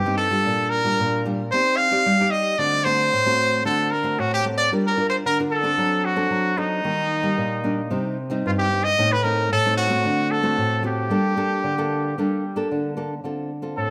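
Samba in G minor at 113 BPM, bittersweet yet lively, cut from a longer piece: a brilliant, punchy trumpet carries the jazz-style solo melody with light vibrato and a forceful, roomy tone. Beneath it, a fingerpicked classical nylon-string guitar accompanies through changes such as Gm7, D7/F#, Ebmaj7 and Adim, both parts playing throughout the 13.9 seconds. The rough home-demo mix has a touch of light studio reverb.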